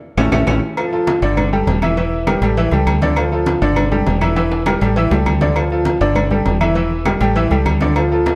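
Fiery and driving, this salsa fragment in D minor races at 200 BPM in straight 4/4, with a bright, worn concert grand piano up front cycling through Dm, Gsus2, Edim and A7 over a round, foam-muted fingered electric bass, while ringing low-tuned congas, tight high-tuned bongos and cowbell, close, dry metal-shelled timbales with agogo bells, and woody claves fill the percussion bed, a band accent and drum fill open the cut, another fill arrives at 4.4 seconds, and a wet large studio reverb gives the whole a dark production.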